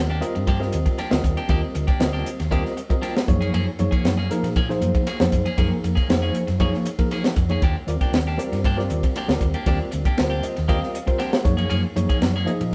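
A live, one-room sound with moderate studio reverb frames this short cut of soaring, slick electric jazz fusion in Eb major at 118 BPM, moving between Ebmaj9 and Gbmaj9 chords. A dry, tight funk kit with a high-tuned snare sits up front beside a worn, slightly out-of-tune tine electric piano heard through its built-in speakers, while a dark, round hollow-body short-scale fingered bass anchors the low end. A bright, twangy, compressed electric guitar adds picked stabs, and the electric piano plays a fill from 10.2 to 11.7 seconds.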